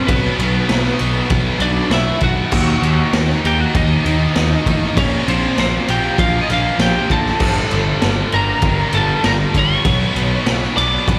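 A straight 4/4 pulse drives this brooding, angsty alternative rock excerpt, cut from a longer quiet-loud piece and heard as a live gig through the venue's PA, with recital hall reverb, small room ambience and a faint mains hum. Up front, a raw garage drum kit from 0.1 seconds pairs a punchy kick and medium-tuned snare with crash and ride cymbals, its gritty, saturated sound carrying a rolled-off top. Beside it sits a round, fuzz-laden picked electric bass, overdriven and heard both direct and amped. Three distorted guitars play the riff in the background: a bright, compressed distorted guitar with slapback echo, a scooped high-gain guitar, and a double-tracked heavy high-gain guitar kept very quiet. Over them, a slightly broken-up lead guitar carries the melody with its own slapback echo, as the harmony moves through Bm, Ebm, Bbm and Gm before returning to Bm at 9.8 seconds.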